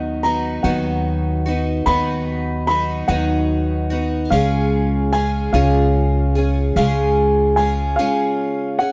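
Nostalgic and peaceful, this short excerpt from a longer acoustic folk piece moves in an unhurried 6/8 at 49 BPM, its harmony shifting from B/D# to C# at 4.3 seconds. A bright, shimmering twelve-string guitar, octave-doubled and picked up front with audible finger squeak, carries the accompaniment. A dark, mellow upright piano with long sustain sings the melody, while a thumpy, gut-strung pizzicato upright bass anchors the low end until it drops out at 7.9 seconds for a brief break, all captured in a dry, close 1970s-style studio sound.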